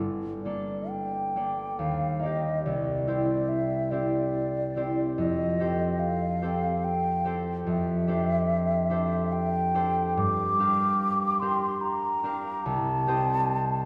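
A wet concert-hall reverb surrounds this short passage, with the listener placed further back in the room. It is an impressionist classical duo for flute and concert harp in a hazy, wistful mood, moving in a gentle triple metre with a free, rubato feel. The harp opens the passage at 0.0 seconds with fingerpicked, ringing accompaniment that sits up front in the mix and spans a deep low register up into the treble. The flute enters at 0.4 seconds with a hollow, airy melody in its upper range, shaped by vibrato and tongued articulation. Colourful harmonies such as Ebmaj9, F9 and Am7/F drift past before settling on Gm7 and Cm6, and the passage is cut from a longer piece.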